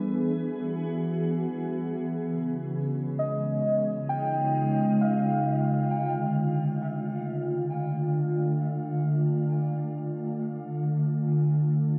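A glassy, full-bodied FM pad opens this reflective, serene ambient piece at 50 BPM in 3/4, holding slow-blooming chorused chords through E, C#add9 and Dm while muted, felt-like synth keys with a dark, intimate tone and phaser, tape echo and shimmer reverb play soft arpeggios from 3.2 to 9.7 seconds, and a filter sweep moves across the pad from 5.9 seconds, all tuned to A4 = 445 Hz and set in a vast, echoing cathedral-like space.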